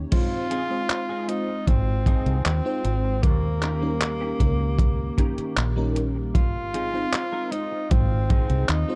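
A dark, cassette-worn haze hangs over this short vaporwave cut at 77 BPM in Ab major, faded and woozy, with a tight, saturated kick and a foam-muted fingered electric bass sitting up front under a detuned 8-bit drum machine of crash cymbal, handclaps and hi-hat. A lush, warbling FM electric piano with its soft pad layer and tape echo carries the chords, while a nostalgic square-wave pad lingers in the background and a clean, compressed electric guitar enters at 0.5 seconds with a riff roughened by 12-bit sampler grit. Over them a breathy tenor saxophone sings an intimate, jazz-style melody with vibrato and scooped notes, its whispered tone trailing into tape echo.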